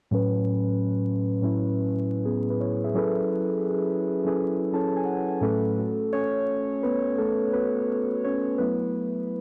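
Nostalgic and dreamy, this hip hop fragment, cut from a longer piece, moves at 85 BPM in 4/4 with a swung sixteenth feel in A major, tuned to A4 = 438 Hz. A single muted, felt-like synth keys part carries it throughout, soft and dark yet placed up front, colored by chorus, cassette tape character and a low-pass filter that sweeps until 5.8 seconds, with a fill from 4.4 seconds before the keys take a solo turn. The harmony drifts from A69 to F#m11 and back to A69 before settling on F#m7, all within a light reverb and a bed of vinyl crackle.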